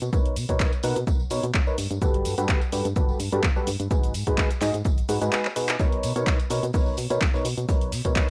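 A lightly swung 4/4 piano house groove carries this feel-good, joyful excerpt, with a punchy, tape-warmed electronic kick up front, a layered house kit of cabasa, handclaps and hi-hat, and a vintage, band-limited tambourine in the background. A round, mellow FM bass pumps against the kick, while a hollow, nasal organ stab with chorus and delay rides up front over a Bmaj9, Gmaj9 and G#m7 progression. After a drum fill at 5.4 seconds, a very quiet acoustic studio kit adds hi-hat and snare from 5.8 seconds, all set in a small room with a cassette-tape character.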